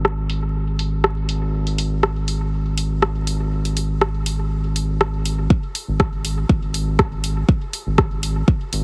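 Heavily compressed, radio-like and dry with vinyl crackle, this nocturnal, cavernous dub techno excerpt swings its sixteenths as a round, mellow analog bass with a wave-folded square-and-sine tone pumps under sidechain compression beneath a layered deep house kit of rim clicks and dark, low-pass filtered hats that carries a filter sweep until 5.5 seconds, when a deep, up-front electronic kick drum enters.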